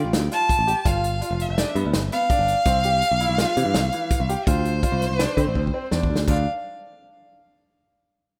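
A driving 5/4 pulse at 166 BPM, set by a punchy-kicked drum kit with crash, hi-hat and a medium-tuned snare, a picked electric bass, and a bright concert grand piano playing arpeggios, carries this brooding progressive instrumental excerpt in D dorian through Dm, G7, Cmaj7 and Dm7, with a drum fill from 5.6 to 6.3 seconds. Above it, a single bowed violin sings the melody with vibrato and portamento, rich and expressive yet distant, trailed by a digital delay. The rough home demo mix sits in a small room with a moderate plate reverb, and the violin and piano ring on until 6.5 seconds as the chords drop out.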